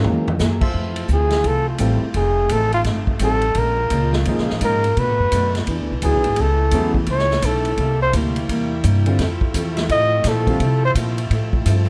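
Big band swing, energetic and joyful, cut from a longer piece: a drum fill opens before a mellow, forceful solo trumpet with scooped notes and a smooth top carries the melody up front from 1.1 seconds. Beneath it, a woody pizzicato upright bass and a distant, roomy drum kit with a punchy kick drive the swing, while a boxy, picked parlour acoustic guitar sits in the background and a natural-toned baby grand piano adds accompaniment in two stretches. A clear trumpet section fires brief stabs near the start, and a saxophone section with light vibrato holds sustained chords behind the soloist, set in light reverb and a dark production.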